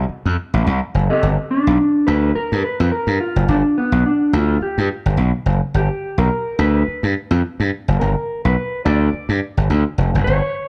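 This funk excerpt struts along at 106 BPM in 4/4, with a swung sixteenth-note feel in G mixolydian and a strutting, funky mood. A gritty slap bass opens the track at 0.0 s, bright, direct and amped with overdrive, sitting up front in a low register over an F9 chord. At 1.1 s a mellow electric guitar enters as accompaniment, dark, clean and fingered, also placed up front. At 1.2 s the harmony moves to G7 and a clean electric guitar solo begins, running to the end at 10.7 s. The bass holds the lower end while the guitar fills in its higher range, the two filling the room together. A moderate large-studio reverb gives the mix a roomy, spacious finish, and the passage is cut from a longer piece.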